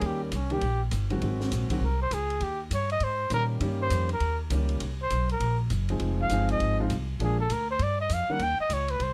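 A breathy, mellow trumpet solos from the first moment, its scooped notes sitting up front over a woody, thumpy upright bass played pizzicato, an intimate grand piano with audible action noise and long sustain, and an open jazz kit of hi-hat, ride, snare and kick with dark cymbals, a high-tuned snare and a boomy kick. This short cut from a longer small-group swing and bop piece has a warm, swinging mood, with the piano dropping out at 8.4 seconds while trumpet, bass and drums continue to 9.1 seconds. Light reverb and close, detailed microphones keep the sound close and clear.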